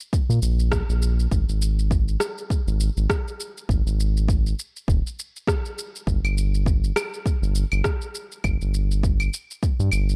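Warm and blissful, this short cut from a longer sunset chillout piece moves at 101 BPM in 4/4, with a gentle swing on the sixteenths. An electronic shaker, rim click and claves open the passage, a layered, produced percussion bed given overdrive and a touch of studio ambience. The deep electronic kick drum joins at 0.1 seconds, sitting up front with its own overdriven grit and room sheen. A round analog bass enters at 0.3 seconds, blending sawtooth and sine tones with a fast attack and long sustain, ranging from Eb1 to Bb2 and sitting prominently in the mix. The production is dark and digital in its ambience, giving the groove a cozy, late-evening glow.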